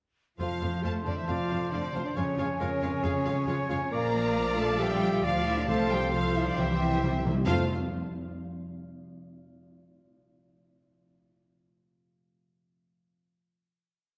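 A full orchestra opens at 0.4 s on a soaring, heroic film-score theme in F major at 136 BPM, with a rich, distant studio violin section carrying the melody over mellow flutes, a warm oboe, background violins and violas, sustained French horn chords, ringing thumb-plucked harp broken chords, warm bowed cellos and woody bowed double basses, and hard-mallet timpani, joined at 1.3 s by a bright clarinet counter-melody, before a timpani fill at 6.6 s leads to a final F chord where the harp rings on alone until 9.3 s in a wet concert-hall reverb.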